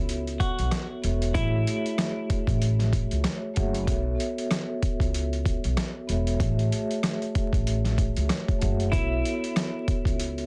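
Tough and dark, this boom-bap hip-hop excerpt in F# minor moves at 95 BPM with a 16th-note swing, as an up-front, mellow vibraphone with soft mallets and cassette-tape grit voices B7sus4 and F#m9/A chords over a woody pizzicato upright bass and a gritty, overdriven sampler-style drum kit with a thumpy kick, hi-hat, rim click and snare, while a dark, clean semi-hollow electric guitar with tape echo plays a short melody from 0.0 to 3.8 seconds and returns at 8.9 seconds, all under a dry, dense, heavily limited master dusted with vinyl crackle.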